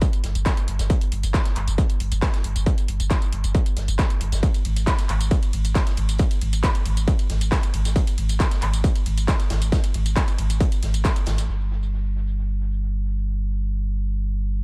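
Driving peak-time techno at 136 BPM in a straight 4/4, this excerpt from a longer piece sounds industrial and relentless, opening straight into a drop. An overdriven, distorted electronic kick sits up front until 11.1 seconds, joined almost at once by a deep, thick sub bass that moves between G1 and Ab1, its saturated triangle tone low-pass filtered and pumping under sidechain. An overdriven techno kit layers handclaps, hi-hat, ride cymbal and tambourine, with its hats, percussion and cymbals darkened by low-pass filtering and breathing with sidechain pumping. Far in the background, an acoustic big-band kit adds hi-hat and a medium-tuned snare, distant and roomy with a rolled-off top, high-pass filtered and trailed by dub echo, its hats also pumping. The drums drop away at 11.5 seconds, leaving the sub bass alone until 14.6 seconds in a small, echo-heavy room.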